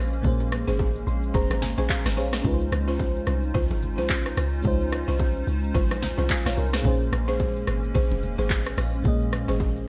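A dry, close recording carries this soulful, deep amapiano excerpt, with a swung groove built on an up-front deep log drum bass that is round and dark and a punchy, layered deep house drum kit of kick, snare, smooth hi-hat, handclaps, rim click and shaker. Over Bbm9 and Dbmaj7 chords, a lush, dreamy FM electric piano with a soft pad layer and chorus plays a fill from 0.8 to 2.4 seconds, while a hollow, flute-like soft pad holds sustained chords with ensemble chorus and sidechain pumping. A buzzing marimba with medium mallets adds woody stabs through a digital delay from 0.7 seconds, and very quiet acoustic congas and bongos sit beneath.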